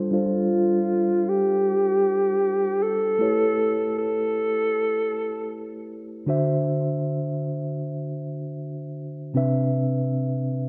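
R&B at a relaxed 78 BPM with a light sixteenth-note swing, this dreamy, tender fragment of a longer piece sets a tine electric piano, clean and up front as if heard through its built-in speakers, under chords moving from G9sus4 through A7 and D7 to Cmaj7. A mellow alto saxophone carries the jazz-style solo melody from 0.1 to 5.9 seconds, using subtone, vibrato and scooped notes over a smooth top, before the piano continues alone to 10.7 seconds. A filter sweep runs across the passage, and light small-room reverb adds to the dark, warm production.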